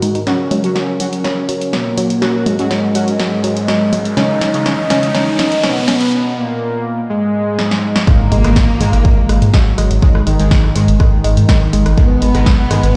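A fat, detuned sawtooth lead carries the melody up front in this hypnotic, cinematic melodic techno cut at 123 BPM in G# minor, its filter sweeping through the build-up with chorus, vibrato, sidechain pumping and dub echo. Beneath it, a woody, wave-folded pluck spins arpeggios in the background, brassy synth stabs punch through with tape echo, and a moody pad holds sustained chords until 6.1 seconds, while a punchy analog drum machine with congas, hi-hat, rim click and snare drives the fills and a riser builds toward a break. At the drop at 8.1 seconds an impact lands, a layered, tape-warm kick pushes to the front and a rich chamber violin section adds a bowed second line, with a round, deep analog bass joining up front moments later, all set in a lush hall reverb with the raw echo of a stone room.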